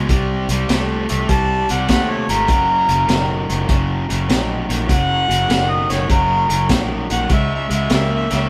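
A swung shuffle at 100 BPM in 4/4 drives this rollicking, soulful electric blues passage in F# mixolydian, tuned to A4 = 436 Hz and cut from a longer piece. The drum kit enters at 0.1 s with a gritty, saturated sound, pairing a punchy kick with a high-tuned snare and hi-hat under a dark, rolled-off top, placed up front in the mix. A bright, overdriven stack guitar plays a picked riff in its low register, while a fingered electric bass with a round, foam-muted tone anchors the bottom. At 1.3 s a mellow harmonica takes the solo melody in a jazz style, with soft attacks, scooped notes and light vibrato, its smooth top roughened by overdrive and trailed by digital delay. The chords move from Cm6 to F# and arrive at C#5 at 7.3 s, and the band sounds as if it is playing live together in a stone room with moderate reverb.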